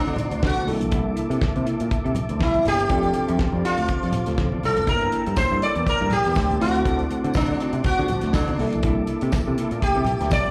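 Danceable and driving, this disco excerpt from a live club gig puts a buzzing, shimmering sitar up front for a solo over a dry drum kit with a fat snare and tight kick, a bright picked electric bass and soft, low-tuned congas. A reedy electric piano and a dark, clean electric guitar sit in the background, both carrying slapback echo, while a flute-like tonewheel organ holds lush chorused chords with a touch of key click. A jingly tambourine slips in quietly at 5.4 seconds, and the whole performance carries the moderate reverb of the venue's PA.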